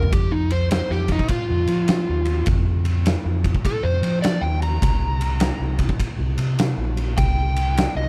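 Driving and raunchy, this eight-second cut from a longer blues rock and southern rock power-trio piece swings at 102 BPM, with a dark, overdriven slide guitar soloing over Ebsus2 and then C5 while an amped, punchy fingered electric bass and an oversized, low-tuned acoustic drum kit (gritty and saturated, with a fat snare, punchy kick, dark cymbals and toms in a big, pumping room) sit up front in an otherwise dry mix.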